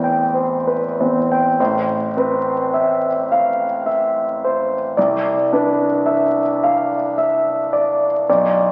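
A slow, rubato 3/4 at 54 BPM gives this short cut from a longer classical, impressionist solo piano piece in A minor a nocturnal, mysterious drift. A concert grand plays alone, intimate and up front, with deep bass, long sustain and audible action noise, moving from Am9 to Amadd9 and then to Cmaj9 at 5.0 seconds. The piano sits in a wet scoring-stage reverb and is heard through the crackle of a very old 78 rpm record whose top end is dulled.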